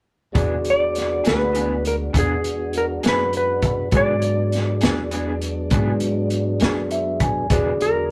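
A rough rehearsal-room recording with a snug small-room ambience frames this short, soulful and swaggering slow blues in a rolling 12/8, resting on an E7 chord. A clean, warm-toned lap steel guitar carries the slide melody up front from 0.7 s, over a crunchy, saturated breakbeat kit with a punchy kick and rolled-off top, a woody, thumpy pizzicato upright bass, and lightly overdriven tonewheel organ chords turning through a slow rotary speaker with audible key click. A picked, slightly broken-up electric guitar with tremolo through a small old amp adds lo-fi accompaniment, while a mellow tine electric piano sits in the background and steps out with a brief fill at 6.6 s.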